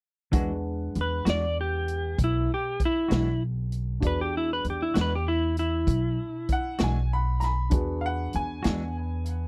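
A dry, close 1970s-style studio sound frames this gritty, rollicking slow blues excerpt in 12/8 at 65 BPM in E mixolydian, opening on an E9 chord as a vintage drum kit with a punchy kick, woody pizzicato upright bass on gut strings, a picked electric guitar pulsing through harmonic tremolo and a dark, mellow concert grand lay down the accompaniment, while a clean lap steel sings the slide melody from 1.0 to 6.8 seconds before a brilliant, slightly detuned upright piano with audible action noise takes a high second line through tape echo from 6.5 seconds.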